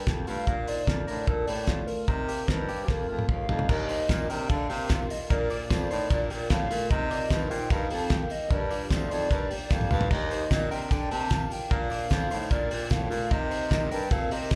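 Jangly indie pop at 150 BPM with a breezy, nostalgic feel, heard live through a club PA, where a breathy, whispered baritone saxophone carries the bass line under a warbling, detuned lead melody with chorus and tape echo, while a twangy clean electric guitar plays arpeggios with slapback echo in the background, a cloth-damped, thuddy drum kit with a fat snare sits up front, and a shimmering, woody twelve-string acoustic guitar joins very quietly at 3.7 seconds after a drum fill, followed by a distant, jingly tambourine at 3.9 seconds, over chords moving from Bbmaj7 through Ebmaj7 and Gm7.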